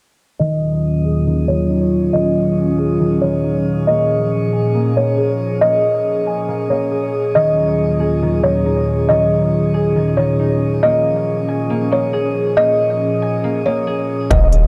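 Hazy and melancholic, this half-time atmospheric cloud-rap excerpt drifts on a warbling, detuned tape-like pad with chorus, built-in reverb and sidechain pumping, alongside a woody, hollow kalimba melody and ringing, fingerpicked concert harp arpeggios, both filtered and echoing through delay, over Ebm11 and Bbm7 chords under a long filter sweep, until a deep, sine-toned 808-style bass and an overdriven industrial drum kit with heavy kick and smooth hats arrive at 14.3 seconds.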